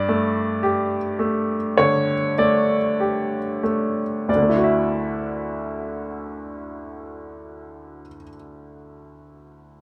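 Intimate and hopeful, this short classical excerpt, cut from a longer piece, unfolds in 4/4 with a rubato feel that lets the phrasing breathe freely. A bright upright piano carries the accompaniment throughout, ranging from D2 up to E5 and sitting up front in the mix. Its tone is woody and polished, with a brilliant edge and audible action noise that bring the listener close to the instrument. The opening passage slows over its first 4.3 seconds, resting on a Gsus2 harmony before moving to Dadd9 as the second section begins. Light reverb gives the sound a touch of space while keeping the playing present and close.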